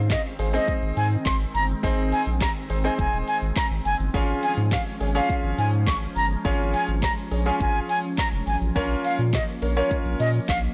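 Blown-out and overdriven with a light reverb, this upbeat, euphoric dance-pop excerpt sets a breathy, close-miked concert flute melody with digital delay over a brilliant grand piano accompaniment, a glassy, ethereal FM pad with ensemble chorus, a thick saturated sub bass, and a deep house drum kit of deep kick, woody snare, dark hats, handclaps and shaker, with sidechain pumping on the pad, bass and piano as the chords move from Ab to Db to Bbm.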